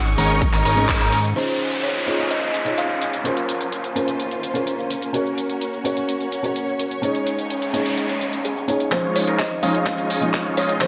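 Festival progressive house in Db major at 127 BPM, triumphant and uplifting, this excerpt opens mid-drop on a punchy layered kick, with a huge, euphoric supersaw lead, a fat, saturated analog bass and a boxy grand piano arpeggio all pumping briefly against the sidechain before a band accent at 0.9 seconds. The bass drops away after 1.3 seconds, leaving a soft, felt-muted upright piano with delay and a dark, distant symphonic string section, lush and bowed with vibrato, to carry the chords from Absus4 through Dbadd9, Bbmadd9 and Gb. A woody, ringing kalimba picks out a delayed melody over this bed, while a filter sweep gradually shapes the strings and electronic downlifters, risers and noise sweeps gather underneath. The tape-tinged house kit of handclaps, hi-hats, shakers, ride and crash runs throughout under low-pass filtering, and at 8.9 seconds a drum fill launches the build-up as the kick and the bright, detuned supersaw riff return. 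A moderate digital room reverb ties the parts together in a polished, spacious mix.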